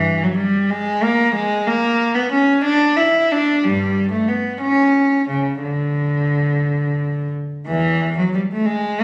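Classical, baroque-style suite movement for unaccompanied cello, solemn and flowing in 6/8 with a rubato feel, cut from a longer piece. A single bowed cello sits up front, its warm, smooth tone touched by light vibrato as it ranges from E2 to E4 with an even line throughout. Light reverb gives the phone-recorded room sound a soft halo.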